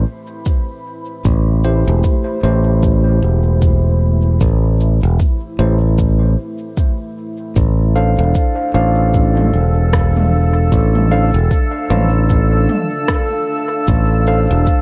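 Dry and close overall, this hazy, meditative slice of ambient dub swings gently as a deep, warbling, detuned pad fades in beneath a bright, growly fingered electric bass sitting up front. A deep, layered electronic kick and a tape-warm electronic kit of cabasa, rim click and toms arrive at 0.5 seconds, the kit carrying dub echo, while a clean tine electric piano adds echoing stabs from 1.6 seconds over a move from Am7 to Dm7. At 8.3 seconds a calm, glassy texture of drifting overtones joins softly.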